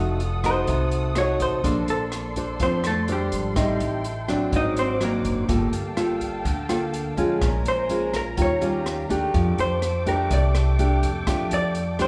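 A straight 4/4 bossa nova groove at 125 BPM in F major carries this romantic, sophisticated excerpt, where a dark, compressed hollow-body jazz guitar solos up front from 0.5 seconds over fingerpicked nylon-string guitar with audible finger squeak, a woody pizzicato upright bass, an open jazz kit of hi-hat, boomy kick and rim click, and a veiled, distant muted string section holding lush sustained chords, all moving through rich harmony from F7b9 to F69 in a moderate recital-hall reverb with a softened top end.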